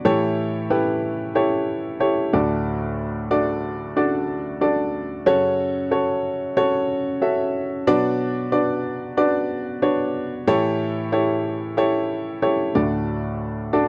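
A baby grand piano plays alone throughout this short pop excerpt, its natural, short-sustained tone sitting up front and spanning D2 to E5 at 92 BPM in a straight 4/4. The mood is driving and earnest, with chords moving from A7 to D, F#m and Bm before returning to A7 and resolving on D at 12.8 seconds. The close, dry 1970s-style studio sound carries little reverb, and the instrument is tuned to A4 = 441 Hz.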